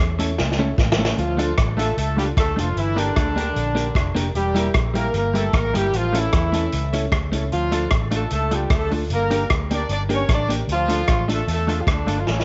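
Vinyl crackle, a dulled top end and light small-room reverb frame this energetic, driving ska excerpt, with a roomy, distant-sounding vintage kit whose punchy kick and medium-tuned snare sit up front beside hi-hat and rim click, and a dark, foam-muted fingered bass with a round, amped tone. In the background, a clean, compressed semi-hollow guitar with phaser plays the accompaniment, while a clear, woody, slightly detuned upright piano adds stabs trailed by tape echo. After a drum fill, a tight, mellow horn section with octave doubling takes the melody up front at 1.2 seconds over a minor progression that moves through a diminished chord.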